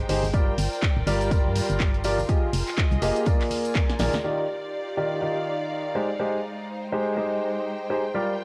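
A clear concert grand piano leads this euphoric, joyful piano house excerpt at 123 BPM in Eb major. Its up-front riff has deep bass and an open tone, and it is shaped by sidechain pumping, a low-pass filter, cassette tape and tape echo. Beneath it, a hollow, organ-like FM bass with a fast, decaying attack and a lush, bowed string section with vibrato and a smooth top also breathe with sidechain pumping. An overdriven, layered electronic kick sits up front, joined by an analog drum machine of handclaps, hi-hat and a punchy snare, plus tambourine and congas played with hard hands in the background. The swung groove moves through Gm7, Fm9 and Bb7 to a drum fill at 3.9 seconds, after which the drums, percussion and bass drop away, leaving piano and strings over Ebmaj9 and Abmaj7 as a filter sweep works on the piano from 4.2 seconds. The whole carries the grain of a home cassette recording with light studio reverb.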